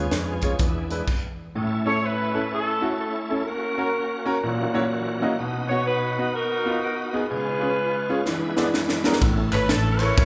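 A moderate recital-hall reverb fills this church or concert-hall recording, giving an uplifting, hopeful uptempo gospel excerpt at 125 BPM in 4/4 a lively glow, with a swung eighth-note feel. A mellow, vintage horn section carries the melody up front with light vibrato in a jazz ensemble style, while an intimate concert grand piano, with audible action noise and deep bass, plays accompaniment throughout. Behind them, a bright tonewheel organ holds full, shouting sustained chords, lightly overdriven with key click, chorus vibrato and a fast rotary speaker. A dark, round, punchy fingered electric bass and a tight, high-tuned fusion drum kit with a pumping small-room sound open the passage, then drop away at a stop at 1.1 seconds, leaving the horns, piano and organ to carry the long middle stretch. The drums return with a fill at 8.3 seconds, the bass comes back soon after, and crisp, close group handclaps join in the background at 9.5 seconds as the chords move from C# through E7 to A.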